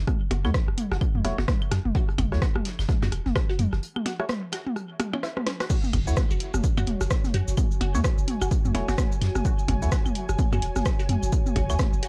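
Dark, lightly reverberant production frames this clinical, quirky minimal techno excerpt at 128 BPM in F# minor with swung 16ths: an up-front punchy electronic kick and a deep sine sub bass with tube saturation and sidechain pumping anchor a small-room analog drum machine of cabasa, crash, hi-hat and rim click, a tape-warm click kit of claves, blips, rim click and toms in dub echo, brushed hi-hat and snare in the background, a squelchy, detuned blip pluck through phaser, lush chorus and tape echo, and hollow, wave-folded organ stabs, while a break at 3.8 seconds and a drum fill lead to a drop at 5.7 seconds as the harmony shifts from F#7(no3) to F#m7 and an ethereal, airy pad enters at 6.4 seconds.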